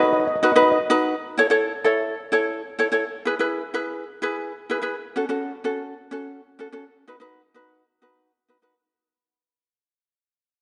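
This bouncy, sunny calypso snippet, cut from a longer piece, opens with a steel pan and a ukulele together. The steel pan carries the melody with a mellow, dark, smooth, shimmering, metallic tone struck with soft rubber sticks, but it sounds only briefly, stopping at 0.8 seconds. The acoustic ukulele sits up front and keeps going, fingerpicked with a light touch over a chord sequence of B, A, E, F#m and back to B. The groove moves at 126 BPM in 4/4 with a gentle swing on the sixteenth notes, and the piece fades out from 1.1 seconds until it ends at 8.7 seconds. A moderate reverb like that of a scoring stage surrounds the players, and the top end is softly rolled off.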